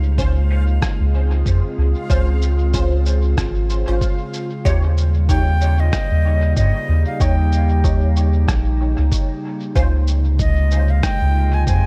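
A deep, round dub sub bass sits up front in this hazy, peaceful ambient dub excerpt, beneath a warbling, detuned tape-like pad with chorus, a reversed, dreamy swelling texture in the background that stops at 4.7 seconds, muted, phased chord stabs with dub echo, a muffled, pitched-down sampler kick alongside shaker and rim click, and an airy, reedy concert flute melody with dub echo that enters at 5.3 seconds, all in a mostly dry room.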